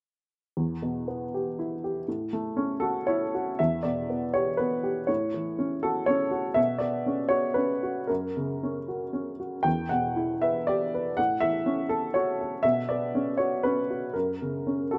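Light reverb surrounds an intimate, melancholic neoclassical minimalist piece in a rubato 3/4, where a woody, slightly detuned upright piano with short sustain sits up front and plays alone from 0.6 to 15.0 seconds, ranging from E2 to G5 as it cycles Em and A6 before adding Bsus2 and F# from 6.6 seconds in this fragment of a longer work.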